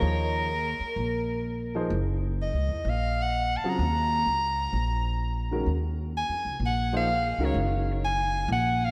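A swung 4/4 pulse carries this hypnotic, spiritual jazz fragment, cut from a longer piece, resting on a single Ebm11 chord as a woody, pizzicato upright bass sits up front while a concert grand piano with deep bass comps until 8.0 s. A soprano saxophone takes the solo melody with light vibrato and a soft attack, its tone haloed by analog delay. The whole mix is dreamy and soaked in a lush hall reverb.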